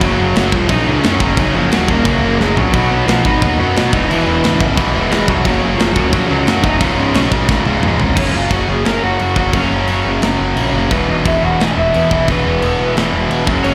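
A growly, fuzz-laden picked electric bass sits up front in this rowdy, upbeat punk rock clip at 176 BPM in a straight 4/4, cut from a longer piece and played live through a venue's PA with recital-hall reverb around it. Over it, a dark lead guitar through a small cranked amp carries the melody, its overdriven tone trailed by slapback echo and digital delay. Three bright, picked rhythm guitars play riffs in the background, two overdriven and one tightly distorted, with one of the overdriven parts double-tracked and two of them carrying slapback echo. A tight metal drum kit with bright cymbals, a medium-tuned snare, kick and toms drives the song, throwing in fills at 2.4 and 7.5 seconds. At 8.2 seconds the band drops into a half-time feel through to the end, with the harmony moving from Gb through Cb, E, Gb and Db5 before settling on Gb5 and E5.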